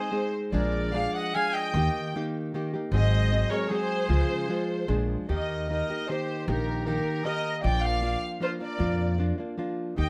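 Mexican folk mariachi in a romantic, festive mood, moving at 153 BPM in 3/4 with a rubato feel and settling into Eb major from 5.3 s in this short cut from a longer piece. A smooth, up-front bowed violin section carries the melody with light vibrato and plate reverb, while a clear, distant trumpet plays a classical-style second line with its own light vibrato. A bright, small-sounding fingerpicked nylon-string guitar provides accompaniment, and a woody, growly pizzicato upright bass enters at 0.5 s, all within a moderate studio room.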